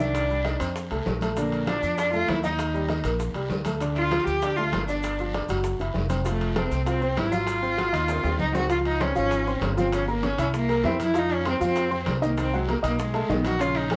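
A bowed cello with rich vibrato carries the melody over a slightly detuned upright piano and a woody, pizzicato upright bass in this danceable, sophisticated Afro-Cuban jazz cut at 196 BPM, moving from F major to Db major at 8.7 seconds. Thick-skinned congas, tight high-tuned bongos, ringing metal-shell timbales, a raspy guiro and grainy maracas fill the percussion bed, with drum fills at 8.1 and 13.1 seconds. The whole piece sits in moderate studio reverb and carries the worn, warbling pitch drift of old cassette tape, its top end dulled.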